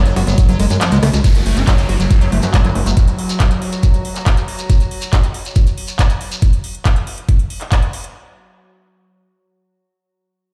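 Psychedelic trance cut from a longer piece, intense and heady, where a fat, detuned sawtooth bass and a squelchy, resonant acid riff, pumping and swept by a filter from 1.2 seconds, sit under a knocking, up-front electronic kick, metallic hats with claps, ride and rim clicks, a grainy, dry shekere, a morphing, warbling wavetable pad of sustained chords and a faint downlifter, all played back through a big sound system into a stone room.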